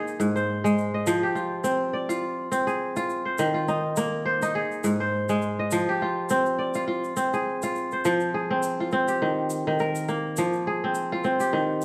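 West African traditional music with a flowing, reflective mood, cut from a longer piece. An up-front kora plays ringing, crisp fingerpicked arpeggios over a swung sixteenth-note feel, moving through Ab, Fm and Eb chords, while a grainy egg shaker sits close and dry beneath it. A moderate recital hall reverb gives the dark production its sense of space.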